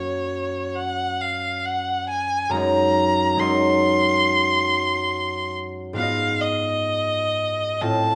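Flowing in a rubato 4/4 at about 69 BPM, this elegiac, melancholic romantic classical excerpt for violin and harp sets a rich, smooth, vibrato-laden bowed violin melody up front over ringing, fingerpicked concert harp accompaniment, both playing throughout the 8.2 seconds as the harmony moves from F# to G#7/F# at 2.5 seconds and Fm7b5/Ab at 6.0 seconds, all within the wet reverb of a stone room.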